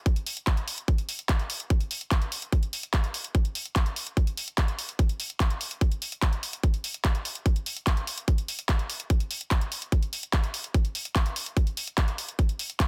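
A dry, dense and heavily limited sound frames this brief psychedelic, intense trance excerpt at 146 BPM in a straight 4/4. An electronic kick drum, tight, layered and up front, runs from 0.1 to 12.9 seconds alongside a drum and bass drum kit whose handclaps and bright hi-hats carry a produced, small-room character. The whole passage holds to a single section, driven purely by these two percussion parts.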